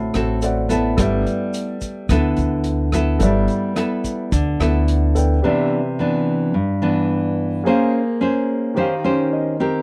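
Sunny and relaxed, this bossa nova excerpt in G major at 108 BPM sets an up-front, full-bodied fingerpicked nylon-string guitar with audible finger squeak beside a warm, short-sustain baby grand piano that adds fills near the start and at the close, while a woody, thumpy pizzicato upright bass, a muffled lo-fi vintage drum kit with punchy kick, hi-hat and rim click, and a grainy egg shaker in the background stop at about 5.4 s, leaving guitar and piano to carry chords such as Cmaj9, Bbm9 and Eb13 in a dry, close 1970s-style studio sound with light reverb.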